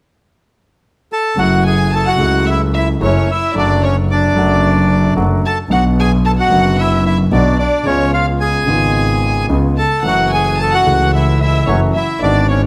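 A rubato tango in 4/4 at 111 BPM, this melancholic, passionate passage in F# minor is taken from a longer piece. A reedy, dry bandoneon sits up front carrying the melody, entering at 1.1 s and playing briefly alone before the other parts join at 1.4 s. A violin adds an expressive second line, bowed with vibrato and portamento and a smooth top, while a concert grand piano supplies accompaniment with a deep, warm bass. Beneath them a single double bass is bowed sul tasto, with light vibrato and an airy, intimate tone heard close and up front. The harmony moves from F#m7 through D/F#, Bm and C#7 back to F#m7, all set in a moderate large-studio reverb with a 1.3-second decay.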